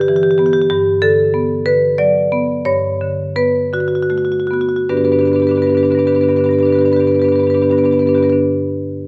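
A solo marimba played with medium hard mallets carries this short, flowing and playful contemporary classical passage in G major, its warm, mid-forward tone set up front and ranging from G2 to D5. Moving in a straight 6/8 at 50 to 66 BPM in dotted quarters, it slows through the first 4.9 seconds while the harmony drifts from Em7/G through Gmaj7 and Bm7/G before settling on G. The instrument falls silent at 8.4 seconds, and a moderate recital hall reverb adds gentle space around its sound.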